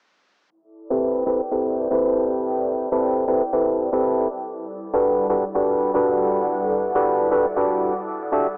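Swung sixteenths in 4/4 give this smooth, moody deep house fragment its loose sway, as a hollow, nasal organ stab with fast-attack, decaying hits sits dark and up front, with subtle chorus and analog delay and a filter sweep running across it from 0.5 s. Behind it, a soft, breathy pad in the background swells in slowly with chorus and phaser, holding long sustained tones over a move from Am9 to Gmaj9 at 4.3 s. Light reverb and a cassette-tape, small-speaker sound wrap the whole passage in a muffled, homemade haze.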